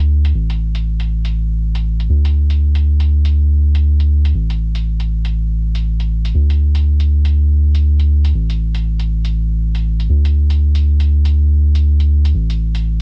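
A 120 BPM deep house groove in 4/4 with a 60% swing on the sixteenths, tuned to A4 = 439 Hz, moody and warm in character. A round, deep analog bass with a triangle-and-sine tone sits up front from 0.0 to 13.0 seconds, its dark, sustained notes carrying a fast attack and a filter sweep, while a low-passed electronic hi-hat with a tape-softened edge sits far back in the mix and drops out at 12.8 seconds. The sound is dry and intimate, a home cassette recording cut from a longer piece.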